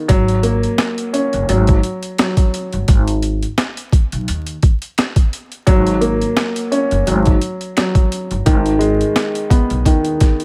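Dark and gritty, this short boom-bap hip-hop fragment in G# minor moves at 86 BPM with a lightly swung 16th feel, built on an intimate, mellow upright piano with audible action noise and a cassette-tape vintage tint that moves through F#/G#, F#sus2 and G#5 before landing on G#m at 8.5 seconds; a woody, growly pizzicato upright bass on steel strings; an overdriven, compressed sampler-style kit up front with a thumpy kick, high-tuned snare, rim click and hi-hat; and very quiet, band-limited finger snaps, the mix framed by small room ambience and vinyl crackle.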